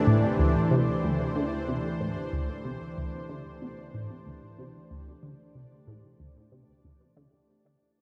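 This is ambient, sequencer-driven space music at 93 BPM in a straight 4/4, an expansive and mysterious fragment cut from a longer piece, lasting about 7.5 seconds over a D5 chord. Up front, a resonant blip pluck plays a squelchy riff between D2 and D3 from 0.1 s, its sawtooth tone layered with noise and a sub octave, shaped by a filter sweep and moving notch, and coloured by phaser and tape echo. Beside it, a lush unison pad holds thick, detuned sawtooth chords from E3 to C5, softened by chorus and a slow attack. A bubbling stepped-filter texture, bright and resonant, shimmers between D4 and D5 with random filter steps, chorus and its own built-in reverb. Deep in the background, a fat, saturated analog bass sustains a low D2 and fades out over the passage. The whole sits in a wet hall reverb with a long 2.6-second tail, giving a dark, warm production as the entire fragment fades away.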